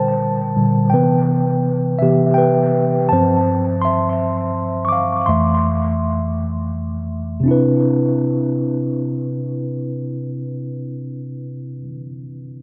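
R&B excerpt in a straight 6/8, tender and sensual, carried by a mellow, clean tine electric piano that sits up front and plays solo through the opening 7.5 seconds. Its chords drift from Bb69 to Cmaj7, G13sus4 and Fmaj7 before settling on Cmaj9 as a new section begins at 7.5 seconds. A dub echo trails the piano, and moderate spring reverb gives the echo-heavy mix a soft, lingering glow.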